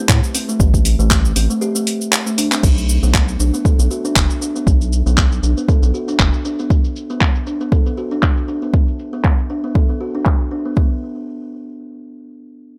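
A dry, gritty hardware sound with transformer saturation frames this spiritual afro house excerpt at 118 BPM in B phrygian, where a woody, hollow kalimba plays airy arpeggios through a low-pass filter and analog delay, a round, dark analog bass with sidechain pumping holds the low end until 6.3 s, and an up-front overdriven electronic kick sits beneath a layered deep house kit of cabasa, crash cymbal, handclaps and hi-hat that carries a filter sweep from 2.6 s as the harmony settles on Bm.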